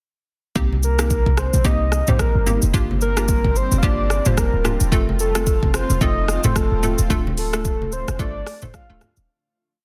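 A dense, heavily limited modern mix in a digital ambience opens this short, hypnotic and smooth afrobeats piece at 110 BPM in 4/4, with a 16th-note swing and a C dorian colour moving through Cm7, Gm7, F and Dm. From 0.6 seconds an up-front electronic afro-pop kit sets the groove with a deep, soft kick, metallic hats, syncopated rim clicks, shaker and toms, with soft clipping on the snare, while very quiet, low-tuned acoustic congas ring and interlock beneath it. A clean, boomy sine 808-style bass bounces through a syncopated line with slides, and a hollow, detuned square-wave pluck with chorus adds bright, syncopated chords. A full, round octave-layered synth lead, wave-folded and treated with chorus, vibrato and delay, carries a hook-based motif from 0.8 seconds, and from 2.0 seconds a cloudy, evolving granular pad with built-in reverb and sidechain pumping hovers in the background. The whole piece fades out between 7.1 and 9.3 seconds.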